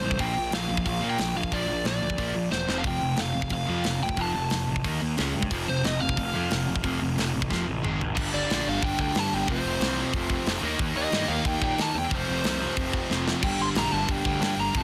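An overdriven semi-hollow guitar carries a high, hollow-bodied melody with delay over two overdriven, picked rhythm guitars and a growly, fuzzed bass, with a tight metal drum kit of bright cymbals and a tight, softly clipped kick arriving up front at 0.1 seconds in this aggressive, urgent punk rock passage at 181 BPM. Drum fills punctuate the straight 4/4 drive as the chords move from Bb through power chords to F, and at 8.2 seconds the harmony turns to Gm, F and Eb while a double-tracked, high-gain guitar adds a bright, distorted layer to the background. The light reverb and dense, heavily limited modern master keep the whole band tight and forceful until the cut at 14.8 seconds.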